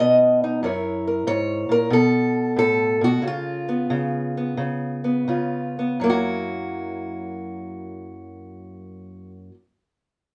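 Acoustic country blues with a laid-back, swaggering mood, played by a lone fingerpicked steel-string acoustic guitar in F# mixolydian, swinging in 4/4 at 82-94 BPM and slowing down between 0.6 and 6.0 seconds. The guitar has a dark, boxy parlour tone and sits up front in a moderate studio ambience, moving through F#7, F#madd11 and C#7 before a second section opens on F#7 at 6.0 seconds. This short clip is cut from a longer piece and has the feel of a live room performance.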